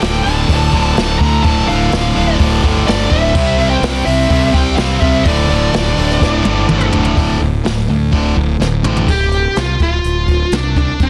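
A growly, punchy fuzz bass sits up front throughout this driving, menacing hard rock excerpt, its fingered lines overdriven and bright against a jazz brush drum kit that brings dark cymbals, a boomy kick and a snare with a touch of soft clipping. Over the top, a smooth, dark overdriven lead guitar carries the melody across the whole clip, dressed in plate reverb and tape echo. Three picked rhythm guitars stack the riff underneath: a hollow-body semi-hollow guitar, a distorted electric sitting in the background, and a tight, double-tracked distorted guitar that drops out at 7.2 seconds. The harmony moves from D minor through C to a D power chord, with drum fills at 6.2 and 8.6 seconds marking the turns between sections. At 9.1 seconds the remaining rhythm guitars fall away, leaving bass, drums and lead over a return to D minor. The mix is dense and heavily limited, with light reverb around the whole band.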